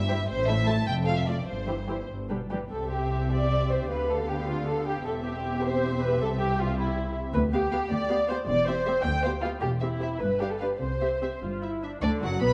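A quick classical-period movement for string orchestra in 6/8 with a rubato feel, this short passage cut from a longer piece carries an urgent, stormy mood despite every section playing con sordino. A muted violin section sings the melody in a veiled, smooth-topped voice with vibrato, while a second muted violin section, the most up front of the ensemble, lays a lush, dark second line beneath it. Muted violas fill in the accompaniment with soft attacks, and muted cellos with light vibrato join muted double basses, whose tone is warm and lush, to anchor the bass. All five sections play together from the opening moments to 12.5 seconds, with a brief opening phrase giving way at 2.7 seconds to a longer passage that circles between tonic and dominant harmonies. A moderate scoring-stage reverb surrounds the bowed ensemble in a dusky, shadowed blend.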